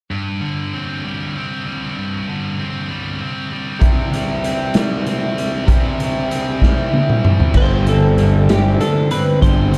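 Indie rock in a carefree, upbeat 6/8 at 64 BPM, cut from a longer piece, with a dark, warm production and light reverb. A scooped, high-gain guitar opens alone on a distorted riff over Gsus4, and at 3.8 s the harmony moves to C as a bright, overdriven electric guitar joins with its own riff, carrying subtle chorus and slapback echo. The raw garage drum kit enters at the same moment, gritty and saturated in a bright stone room, with a punchy kick, a medium-tuned snare, a rolled-off top and a drum fill from 6.6 to 7.6 s. A round, fuzz-laden picked bass arrives up front on a low G at 7.5 s, and the chord returns to Gsus4 as a clean, compressed twelve-string electric guitar adds a melody between G4 and C5, touched with slapback echo and plate reverb.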